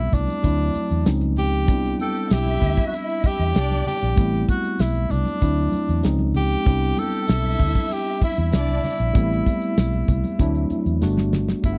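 A steady 96 BPM groove in 4/4 from a damped drum kit with a tight kick and a medium-tuned snare, along with a dark, round, foam-muted fingered bass, anchors this romantic, smooth slice of lush 1970s-style soul, with very quiet congas and a jingly tambourine adding texture and a drum fill arriving at 11.0 seconds. A worn, slightly out-of-tune electric piano, lightly overdriven through a combo amp, lays down rich ninth chords beneath a breathy, intimate tenor saxophone melody with light vibrato and a soft attack. From 2.0 to 9.0 seconds a bowed studio violin section adds an expressive second line full of vibrato and portamento, all captured in a dry, close studio sound.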